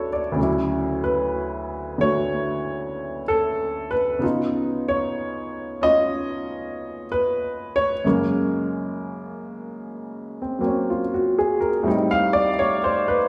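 A clear, woody upright piano plays alone up front, its intimate tone carrying audible action noise as it moves through a swinging, sophisticated solo jazz passage in a loose rubato feel, with chords of Dmaj9, C#9, F#add9 and Am7b5, all set in the wet reverb of a recital hall across this 13.3-second fragment of a longer piece.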